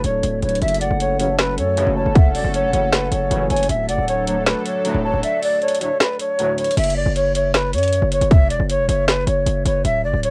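Lightly reverberant, cassette-recorded home sound frames this brooding, menacing half-time hip hop and trap excerpt, where a distant, airy jazz flute with vibrato carries the melody through tape echo over a saturated, distorted 808-style bass and up-front trap drums with a hard-clipped kick, woody snare and metallic hats roughened by 12-bit sampler grit, while a detuned sawtooth pad holds chorused chords until 6.7 seconds, a hollow clarinet-like synth lead sings a soft second line in the background, a clear brass section punctuates with tight stabs, and the kick drops out from 5.2 to 6.8 seconds.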